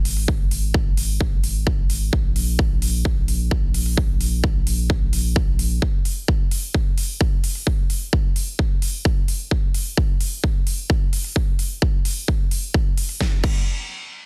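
Emotional and anthemic, this festival progressive house fragment opens on a deep, thick, saturated sub bass pumping under sidechain until 5.8 seconds, while a punchy, up-front electronic kick and a layered big-room dance kit with a huge snare, crisp hi-hats and crash cymbal carry on in studio reverb through a dense, heavily limited modern master.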